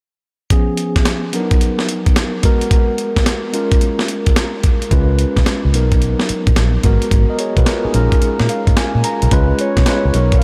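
A confident, slick new jack swing excerpt at 109 BPM with swung sixteenths opens at 0.5 s on a clean, up-front tine electric piano heard through its built-in speakers, cycling C#7, Bmaj7, G#m9 and A#m7 over a gritty, compressed sampler-style breakbeat kit with a thumpy kick, medium-tuned snare and hi-hat, tape-warm and re-recorded in a small room, before a dark, amped, foam-muted and punchy vintage fingered electric bass joins at 4.9 s, the piano adds a brief fill, and a mellow, full, octave-layered synth lead with a sub octave, vibrato, chorus, phaser and tape echo enters at 9.6 s, all in light reverb, as the fragment cuts off.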